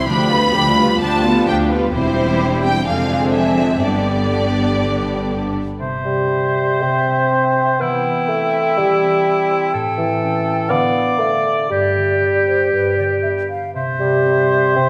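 A rubato 4/4 pulse wavers between 114 and 130 BPM in this dramatic, urgent classical excerpt in C major, where lush bowed violin sections carry a vibrato-rich melody and second line over a bright, intense viola section, a rich cello and double bass foundation, and a soft-attacked French horn section holding sustained chords in the background. At 5.8 seconds the strings and horns give way to woodwinds: a clear, up-front oboe and a hollow, airy flute share the second line while a mellow bassoon enters at 6.1 seconds to accompany. Ringing thumb-plucked harp arpeggios run throughout, all set in the wet reverb of a scoring stage.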